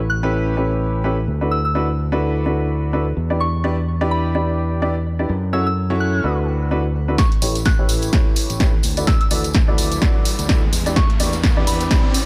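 Piano house at 127 BPM in A mixolydian, uplifting and feel-good, with a swung sixteenth-note lilt. It opens on a bright, direct fingered electric bass and a woody, slightly detuned upright piano riff, both up front and pumping with sidechain under a low-pass filter. A soft FM synth bell floats the melody high above, pure and mellow, with chorus and delay. The chords move through A9, D69, Em7 and F#m7. At 7.2 seconds the build-up arrives with a drum fill: a punchy electronic kick up front, drum machine hi-hat and snare re-recorded in a large room, and a close, dry tambourine in the background, while a filter sweeps across the piano. From 8.9 seconds a riser climbs in the background, the whole excerpt sitting in light digital ambience as it is cut from a longer piece.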